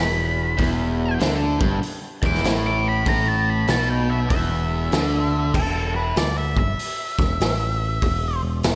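A lush hall reverb gives this short cut from a longer piece a big arena sound, with the rhythm section placed up front. It is brooding, gritty blues rock with a southern rock edge, set in E minor at 97 BPM in 4/4 with a swung eighth-note feel and tuning a touch below standard at A4 = 437 Hz. A bright, double-tracked garage guitar with overdrive and slapback echo plays a low riff over an E5 power chord, while a growling, round electric bass, overdriven and dark, holds down the bottom. The acoustic drum kit comes in at 0.6 seconds with a boomy kick, a medium-tuned snare, hi-hat and crash, its saturated small-room tone pumping beneath dusky cymbals and a rolled-off top. At 5.5 seconds the riff guitar drops out, the harmony leaves the chord behind, and the octave-fuzz lead guitar, distorted with slapback echo and picked in a high register, steps forward for a solo.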